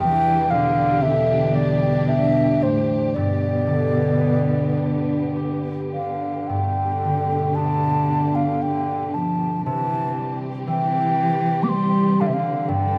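Heard in a moderate recital-hall reverb, this haunting, longing Celtic slow air in 3/4 drifts rubato at 50-62 BPM, with an airy, wooden baroque flute carrying the tongued, vibrato melody up front, a dark cello bowing a close sul tasto second line, a ringing, fingerpicked concert harp accompanying up front, and a smooth-topped studio string section holding expressive sustained chords with portamento, moving from Em7 through G and Gadd9 to C across this 13-second passage cut from a longer piece.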